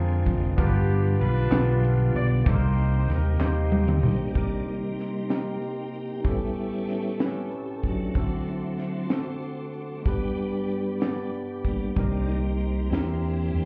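Soulful and fervent, this slow gospel passage in 6/8 at 63 BPM, cut from a longer piece, opens with a warm horn melody over barky tine electric piano, a piping tonewheel organ with slow rotary speaker and key click, a round, dark fingered bass and a crisp fusion kit with a punchy kick and high-tuned snare, plus hollow handclaps in the background, before the horns and bass drop out at 4.3 seconds, leaving the organ to solo over the electric piano, drums and lush, distant bowed strings until the bass returns at 12.0 seconds, all heard muffled as if through a wall in a small club room.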